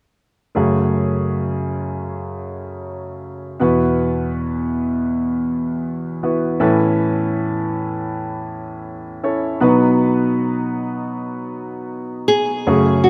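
This tender, heartfelt pop piece is cut from a longer work and opens with a clear concert grand piano at 0.5 s, playing accompaniment from a deep bass register up into its middle range. The piano's open tone and long sustain carry a progression that moves through F#madd9, Esus2, Aadd9 and B. A nylon-string guitar enters at 12.3 s with a brief melody, its dark, small, fingerpicked sound standing just above the piano in level until the close at 13.1 s. Both parts sit up front, wrapped in a moderate, lush hall reverb with a long tail. The overall mix has the rough character of a home demo.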